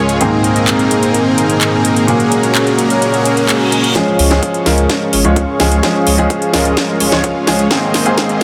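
A straight house groove of handclaps, metallic hi-hats and a cracking snare drives this triumphant, anthemic slice of festival progressive house, with a huge, detuned supersaw riff up front over a clear, worn grand piano with gritty 12-bit sampler character and dub echo, and a lush, nasal pad glistening with chorus in the background, all three breathing with sidechain pumping. The pad's filter sweeps through the opening four seconds, and a quiet reverse cymbal and riser slips in at 3.4 seconds. At 4.0 seconds a build-up begins with a drum fill as a punchy, tape-toned kick enters, and a deep, saturated sine sub bass follows at 4.2 seconds while the supersaw sweeps through its low-pass filter. The mix has a light reverb and a dense, heavily limited modern master.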